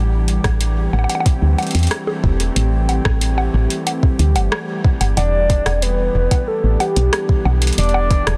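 A woody, round FM bass sits up front in this short IDM fragment, its fast-attack notes decaying into a dark, soft low end. The mood is cerebral and glitchy, moving at 92 BPM in a straight 4/4 and tuned slightly sharp to A4 = 443 Hz. Behind it, a detuned, lo-fi tape-like pad holds mellow sustained chords with a slow attack, chorus and its own reverb, moving from Am7 to Em7 at 5.2 s. An analog drum machine adds bongos, metallic hi-hats and rim clicks through tape echo, joined by a soft, produced electronic kick placed close in the mix. At 5.2 s a nostalgic, warbling lead enters with vibrato, chorus and tape echo. Light reverb surrounds the parts, and the master is dense and heavily limited.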